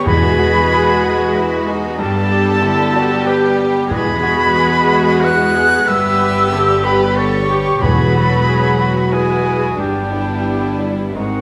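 Opening at once on a full cinematic orchestra at 92 BPM in a rubato 3/4, this bittersweet, longing passage sets a gentle, floating sul tasto violin melody in the background over a second line shared by a distant, mellow cor anglais, an airy, up-front concert flute with vibrato and a very quiet, close violin section, while a clear concert grand piano and a dark, woody, lush viola section accompany, a French horn section holds smooth sustained chords, cellos and double basses (the basses from 0.1 s) bow a pure bass beneath, and round, soft-mallet timpani sound at 0.1, 3.9 and 7.8 s as Eadd9 and G alternate inside a reverberant recital hall.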